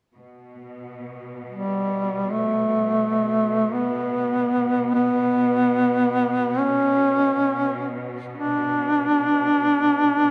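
This Caucasian folk lament in B minor unfolds in free time, with a longing, solemn mood and tuning set to A4 = 439 Hz. A distant, lush symphonic string section opens at 0.1 seconds, its bowed ensemble sustaining a soft-attacked drone on B2 with expressive vibrato. At 1.5 seconds a warm, close-miked duduk enters up front as the solo voice, singing a folk-style melody between G3 and D4 with vibrato and scooped notes. The duduk sits well forward of the quieter strings, and a wet church reverb of about 2.6 seconds surrounds the performance with a spacious air. This brief passage, cut from a longer piece, runs until 10.3 seconds.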